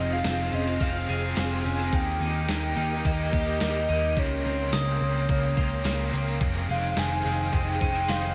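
A dark, foam-muted picked bass and a clean 12-bit drum machine lay down a straight 4/4 pulse, the drums bringing a thumpy kick, snare, ride and tambourine, in this hazy, haunting dream-pop fragment cut from a longer piece. A hollow, woody clarinet-like synth lead carries the melody through chorus, phaser and delay, over an overdriven electric guitar with tremolo, background clean-guitar arpeggios, and silky, warbling string-machine chords moving from Fm7 through Eb and Bbmadd9/Db. From 0.8 s a bell-like glockenspiel with brass mallets rings faintly behind, and a plate reverb soaks the whole mix in a dreamy wash.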